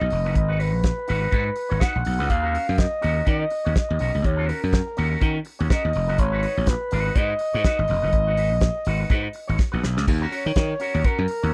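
Disco at 124 BPM with a sultry, danceable swing, this dry, close 1970s-style excerpt pairs a breathy, whispered flugelhorn melody, distant and lightly vibrato with scooped notes, against a dark, clean envelope-filtered electric guitar, a growly overdriven slap bass punching up front, and a damped 70s drum kit with a fat snare, tight kick and dark cymbals, its fill at 9.6 seconds leading into a new section at 10.1 seconds over Abm7 and Ebm7 chords.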